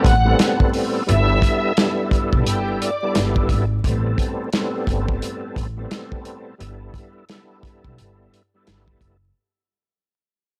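Gritty and moody, this boom-bap hip-hop excerpt rides a swung 87 BPM groove in 4/4 over Am9 and G69 chords, with a thick, overdriven tonewheel organ up front, its slow rotary speaker, chorus vibrato and key click run through cassette tape. A lush, distant violin section carries the melody with expressive bowed vibrato and analog delay until 3.3 seconds, while a woody pizzicato upright bass and a warm soul drum kit with tight kick, medium-tuned snare and hi-hat hold the low end. The small room sound is dry and crackles like vinyl, and the whole passage is a fade-out.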